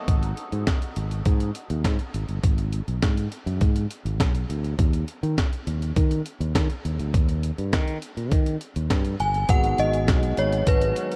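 A faint, shimmering pulse-width pad opens this feel-good, danceable early-eighties boogie funk excerpt at 102 BPM. A gritty, pitched-up breakbeat kit then arrives up front, with thumpy kick, medium-tuned snare, handclaps and hi-hat, alongside a growly, bright fingered electric bass, and the harmony moves from an unharmonised opening to D#. At 9.2 seconds a chiming, inharmonic FM synth melody rings out through ensemble chorus and phaser; from 9.5 seconds the retro pad returns and a barky, clean tine electric piano sits in the background over G#m7, all within light reverb and lossy compression artefacts.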